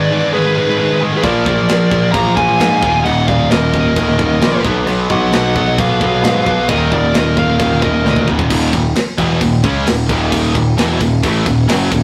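Heavy metal in Eb minor at 132 BPM, epic and heavy, with two dark, high-gain lead guitars carrying a melody and a lower second line until 8.2 s over three picked riff guitars: a double-tracked distorted one and two very quiet companions, one overdriven and one scooped. At 1.2 s a growly, punchy overdriven bass comes in up front alongside a tight acoustic kit with bright cymbals, kick and snare, and a drum fill leads into a new section that settles on Ebm at 8.5 s. The rough rehearsal-room sound carries moderate reverb and a saturated edge, cut from a longer piece.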